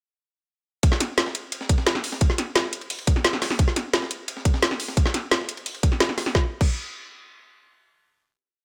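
This short, aggressive drum and bass piece opens at 0.8 seconds with a drop in which three drum parts arrive together at 174 BPM in a straight 4/4. Up front, a tight electronic kick drives a broken-beat pattern, layered with a produced drum and bass kit whose woody snare, metallic hats and crash cymbal give the rhythm a tense, technical edge. Beneath them sits a looped breakbeat with edits from a sampler-style kit, compressed and pitched up, with a gritty, high-tuned snare, a tape-colored character and filtered hi-hat, ride and snare sounds. This breakbeat layer drops away at 6.3 seconds as the section turns into a final hit. The front kit and kick ring out until 6.7 seconds, all of it set in a digital ambience that lends a sense of space around the pounding percussion.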